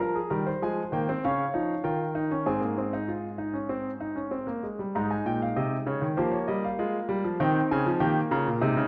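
Contemplative yet driving, this brief excerpt of a baroque-style four-part fugue in Ab major moves at 98 BPM in a straight 4/4, played by a solo concert grand piano spanning Ab2 to Bb5 with intimate, up-front presence, deep bass, long sustain and audible action noise, its polished tone set in a wet recital hall reverb within a dark, warm production as the harmony passes from Fm through Dbadd9 and Eb7 to Ab before a second section turns to Db/F and Eb7.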